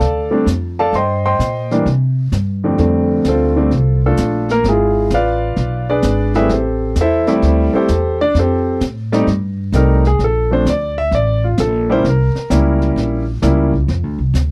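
A relaxed 4/4 swing at 130 BPM opens this jazz piano trio in F major, with brushes on the drum kit setting a light, natural pulse of brushed snare, hi-hat and punchy kick that sits well back in the mix. The upright bass is plucked and up front, its gut strings giving a woody, thumpy tone through the whole passage. The clear grand piano carries the melody, sounding intimate and close, with long sustain and the noise of its action audible. At 2.8 seconds the piano moves into a solo over changes such as E7b9, Am7, F9 and Bbmaj9, ranging from F2 up to C6 before it stops at 13.7 seconds as the bass and drums carry on briefly. The sophisticated mood is framed by a dry, close studio sound in a 1970s style with only light reverb, and the clip is cut from a longer piece.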